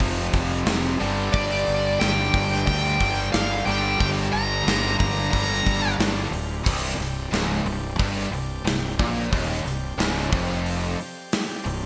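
A smooth, overdriven lead guitar stands up front in this driving, heavy hard rock excerpt, carrying the melody from 1.3 seconds over picked riffs from a distorted electric guitar, a double-tracked tight distorted guitar, and a very quiet cranked stack guitar that stops at 6.3 seconds. Beneath them, a growly fuzz fingered bass and a gated 80s drum kit with a punchy kick, bright cymbals and a medium-tuned snare drive the straight 4/4 pulse, while a faintly shouting tonewheel organ holds sustained chords through a stopped rotary speaker. The bright 1980s-style digital production sits in a lush hall reverb over small room ambience, with the harmony moving from F5 and Gm to Cm at 6.7 seconds.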